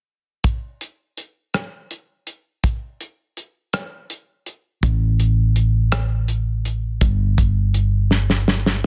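Close and densely limited with little reverb, this brief cut from a longer folk rock and heartland rock piece moves at 55 BPM in a straight 6/8 with a jangly, warm mood. A damped, up-front 70s drum kit with a tight kick, medium-tuned snare, rim clicks and hi-hat starts at 0.4 seconds, a dark, round hollow-body short-scale electric bass joins at 4.8 seconds on low notes between G1 and A1, and a drum fill rounds things off from 8.1 seconds.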